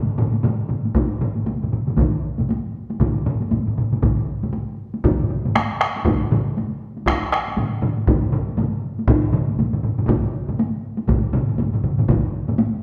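Recorded with the wet reverb of a church or concert hall, this short cut from a longer Japanese traditional taiko piece sounds ceremonial and powerful, its 4/4 pulse at 118 BPM carrying a 60% swing on the sixteenths and speeding up throughout. Four taiko ensemble parts drive it: two struck with hard sticks, close and acoustic, one of them up front, from 0.2 seconds, and a third with heavy sticks in a small-room sound, all running to about 12.6 seconds. A fourth heavy-stick part enters at 0.9 seconds, compressed, saturated and pushed up front, until 12.2 seconds.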